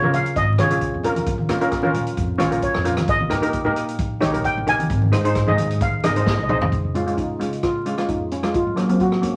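Two steel pans open this sunny, festive calypso excerpt at 132 BPM in Db major: a mellow lead pan played with soft rubber sticks carries a shimmering solo melody, while a brighter double-seconds pan struck with hard rubber sticks sits up front with accompaniment, over a woody pizzicato upright bass and thin-skinned, low-tuned congas in the background. A vintage drum kit with a punchy kick and rolled-off top adds hi-hat, snare, rim clicks and toms, and its fill from 6.3 s leads into a new section at 6.7 s, where the congas drop out and the harmony moves to a closing Gbmaj7. The whole recording carries vinyl crackle and a wet studio reverb, giving it an aged, roomy glow.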